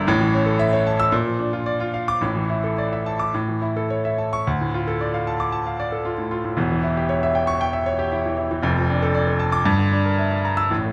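Pushed and pulled in a rubato 4/4 between 105 and 118 BPM, this stormy, passionate passage from a virtuoso classical piano study in D minor sets a clear, intimate grand piano up front, its key action audible across a range from E1 to E6, circling A, Bb and Asus4 before turning at 4.5 seconds to Dm, C#dim/E, Dm/F and Em7b5/G, all carried by a moderate large-studio reverb.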